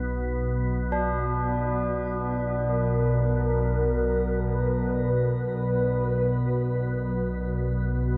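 A slow, straight 4/4 pulse at 51 BPM carries this cavernous, dark ambient drone in B harmonic minor, cut from a longer piece and heard through a huge, wet reverb with a cassette-tape tint. An up-front, detuned organ-like drone with ensemble chorus sustains low from the start alongside a very quiet, pure quartz singing bowl with slow beating, while soft, solemn tubular bells begin arpeggios as the music settles on B minor at 0.9 seconds, washed in shimmer reverb and delay. From 2.7 to 7.3 seconds a mellow, horn-like synth lead sings a round, warbling, vintage melody with vibrato, its chorus, shimmer and echoes blending into the haze.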